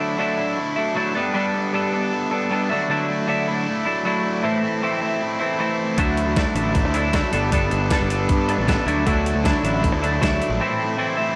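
A dreamy mix soaked in a wet church reverb gives this short indie rock excerpt a cavernous, hazy glow. At 156 BPM in a straight 4/4 and D mixolydian, it feels upbeat yet wistful, cycling through Dadd9, Gadd9, Dadd9 and Am. From the start, a clean, twangy twelve-string electric guitar sits up front playing a riff alongside a compressed fuzz guitar riff treated with distortion, subtle chorus and analog delay. At 6.0 s a punchy, overdriven fuzz bass and a crisp 8-bit drum machine arrive, the latter a sampler-style kit with a thumpy kick, medium-tuned snare, hi-hat and a tape-warm character. The bass and drums drop away by 10.6 s, leaving the two guitars to ring out into the reverb.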